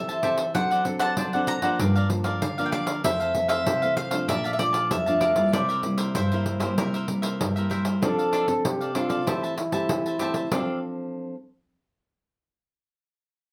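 Playful and sunny, this short cut from a longer samba and choro piece moves at 96 BPM in F major, with a round, double-strung mandolin carrying the melody while crisp cavaquinho, an up-front, bright fingerpicked nylon-string guitar and a jingly pandeiro fill out the accompaniment in a small room. The mandolin drops out at 7.4 seconds, and at 8.0 seconds a clear trombone with light vibrato and a slapback echo takes up a vintage, jazz-style second line. Chords move through colors such as Gm7, Bbmaj7 and C7 before settling on F6.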